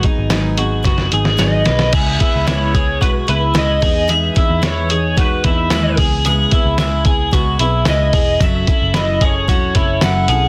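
A muffled, pitched-down sampler-style drum kit sits up front in this bittersweet, wistful stretch of jangly indie pop, its thumpy kick, fat snare, hi-hat and crash setting a straight 111 BPM in 4/4, and a drum fill carries the opening into the main section. A bright, clean twelve-string electric guitar spins twangy, compressed arpeggios through analog chorus, above a full-bodied jumbo steel-string acoustic guitar picking the accompaniment. A dark, round, foam-muted vintage bass joins at 0.2 seconds with a punchy, amped tone. From 1.4 seconds a lead guitar through a small cranked amp takes the melody, its overdriven, lo-fi voice framed by slapback echo and plate reverb. In C# minor, the harmony moves from G#m7 through C#m7, Emaj7 and back to C#m7 before reaching F#m7, all set in light reverb with a dense, heavily limited modern master.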